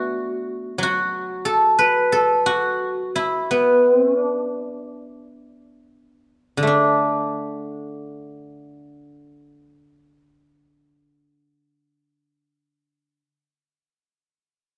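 A moderate recital-hall reverb surrounds this recording, and its top end is gently rolled off, giving the air around the instrument a soft, rounded quality. It is a serene, pastoral passage of Chinese traditional music, cut from a longer piece, for solo guzheng played in a free, rubato 4/4. The guzheng sits up front and plays throughout. Its fingerpicked strings sound silvery and ringing across a span from D3 to B4. The opening half gradually slows. A second section begins at 6.7 seconds and carries the unhurried, serene mood to the close at 13.2 seconds.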